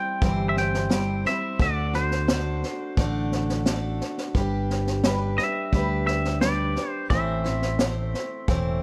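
Light reverb and a small-room, up-front sound give this short honky-tonk and classic country section a down-home, nostalgic glow at a relaxed 87 BPM in a straight 4/4. A twangy, compressed electric guitar with analog delay plays a clean solo throughout, over a full-bodied picked dreadnought acoustic guitar picking through C, D, G and A minor. A dark, round fingered electric bass and a vintage drum kit with a punchy kick and a rolled-off top enter at 0.2 seconds.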